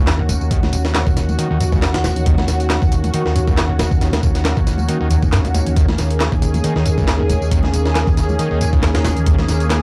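A lush, detuned sawtooth pad holds an Eb minor seventh chord with chorus, phaser and sidechain pumping, while a squelchy, resonant acid bass riff sits in the background with distortion and tape echo in this gritty, swaggering breakbeat cut from a longer piece at 137 BPM with a 55% swing on the sixteenths. From 0.1 seconds an up-front, compressed, pitched-up sampler-style kit with a thumpy kick, high-tuned snare and hi-hat drives the groove beside a round, punchy overdriven fingered electric bass anchored on Eb, layered electronic handclaps and tambourine. Close, dry congas enter at 0.3 seconds, and the whole dry, gritty hardware recording carries cassette-tape grit under a light reverb.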